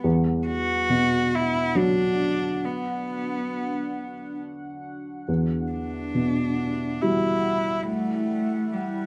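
Melancholic and reflective, this short neoclassical fragment for piano and strings moves at a slow 69 BPM in 3/4 with a loose, rubato feel, set in E minor and tuned to A4 = 437 Hz. A dark, woody upright piano sits up front as the accompaniment, its boxy tone grounding the harmony from the low register. A single cello carries the second line with a light vibrato and a soft, airy sul tasto bow, sounding close and intimate. Further back in the mix, a deep, moody ambient pad holds sustained chords with a slow attack and long release, colored by chorus, phaser and its own reverb. The harmony rests on Bm/E before shifting to Emadd9 at 5.3 seconds. A small, wet room and a rough home-demo mix give the piece an unpolished, personal character.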